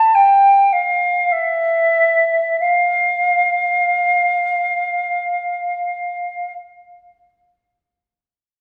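Radiant and dance-like, this brief excerpt from a longer baroque-style fantasia in F major unfolds in free time for unaccompanied silver concert flute, its tone metallic, pure and hollow, with vibrato and a crisp attack. The flute moves within a narrow upper span from E5 to A5, slowing down over the opening 2.6 seconds before the second section begins, and its line ends at 6.5 seconds. A wet recital hall reverb places the listener further back in the room, lending the performance a distant glow.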